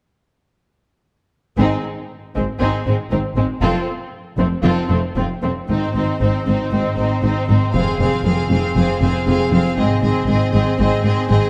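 A dark, warm production sets a heroic film-score string section on a scoring stage with a moderate 1.6-second reverb, in this cut from a longer piece. At 118 BPM in a straight 4/4 in Ab major, the mood is adventurous and soaring, with harmony moving through Ab, F and Fm. From 1.6 s, a lush violin section carries the melody with focused, bowed vibrato, while a second violin line sings beneath it and a clear viola section holds an accompanying C4. Below them, a rich cello section sits close yet in the background, and a double bass section with a smooth top anchors the low register. At 5.7 s a concert harp joins with ringing, thumb-plucked arpeggios tucked behind the strings as the music builds toward 11.5 s.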